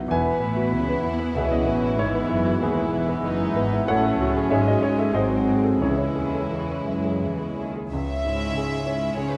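A clear, up-front grand piano carries the melody over dark, distant French horn chords and a cello section bass line from the opening of this passionate, lush romantic excerpt for piano and orchestra in rubato 3/4 at 82-100 BPM, as an intimate chamber violin section also plays the melody, a mellow clarinet, an airy silver flute and floating symphonic violins add second lines, woody violas and a vintage-toned bassoon fill the accompaniment, and double basses deepen the low end, while the harmony moves from E major into C# minor from 3.9 s and soft-mallet timpani sound briefly at 5.8 s, within a moderate scoring-stage reverb.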